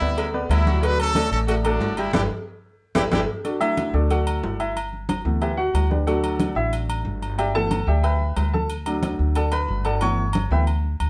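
Salsa at a brisk 183 BPM in D major, this sunny, festive excerpt opens with a brilliant, punchy horn section carrying the melody over a clear grand piano, a woody, thumpy pizzicato upright bass and soft-handed congas in the background, joined at 0.2 seconds by a round, distant cowbell, also in the background, and ringing, close agogo bells and timbales. A drum fill and band accent at 2.1 seconds lead into a present, up-front grand piano solo from 3.4 seconds, with the horns and cowbell gone by 3.2 seconds, and the whole sits in light reverb.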